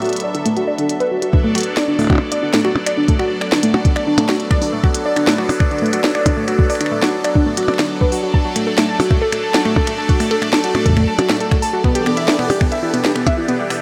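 This IDM excerpt is cerebral and eerie, moving at 137 BPM in a straight 4/4 in B minor, with chords shifting from Bm7 to D at 8.3 seconds and then to Em7. A phased analog pad holds sustained chords throughout, its detuned sawtooth tone swirling and evolving through phaser and chorus. Up front, a warbly, dusty pluck spins arpeggios with a lo-fi, darker edge, opening with a filter sweep and carrying chorus and delay. A glitchy drum kit of tiny snare, clicky hats, finger snaps and percussion blips runs the whole way, joined at 1.3 seconds by a soft, tape-warm electronic kick that sits prominently in the mix. A very quiet, grainy texture flickers at the start and returns near the end, wrapped in its own reverb, while light digital ambience frames the whole piece.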